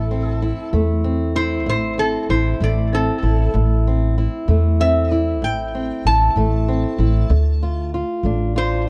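A dark, lightly reverberant recording frames this mournful, smoky acoustic country blues fragment in A minor at 64 BPM in 12/8, where a metallic, nasal resonator slide guitar played with fingerpicks carries the melody up front through plate reverb and tape echo, an old ladder-braced acoustic guitar with aged strings fingerpicks a boxy, woody accompaniment, and a thumpy pizzicato upright bass holds the low end, with the harmony moving from Am to Dm at 7.3 seconds.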